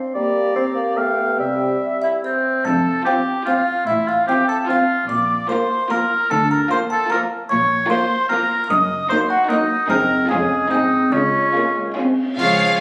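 A playful, whimsical film cue in 3/4 at 148 BPM opens in F major with dark bassoon and clarinet, an up-front oboe, an airy, distant flute and a mellow French horn section holding sustained chords, before a delicate, tinkling music box, slightly out of tune, takes the melody at 2.0 s. From 2.7 s a clear cello section and a rich double bass section carry the bass, soon joined by a violin section sharing the melody with vibrato, a very quiet second violin line with portamento and a smooth viola accompaniment, as the harmony moves to Db major at 7.5 s. From 9.9 s a cymbal swell, clash cymbals and concert bass drum join in the background, and the full band lands a closing accent at 12.4 s, all set in a reverberant recital hall captured on a phone with compression, a magical passage cut from a longer piece.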